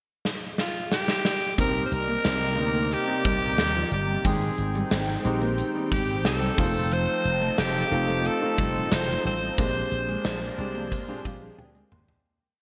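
A raspy, close-miked alto saxophone carries a motif-based melody up front over gated 80s drums with a big backbeat, growly slap bass with an envelope filter, a grand piano pushing close-voiced chords, a twangy, muted twelve-string electric guitar line, a lush detuned unison pad and brief synth brass punches near 10.3 seconds, in a nostalgic, urgent 1980s-style pop piece in C minor at 90 BPM that fades out from 9.6 seconds in a bright digital production bathed in hall reverb.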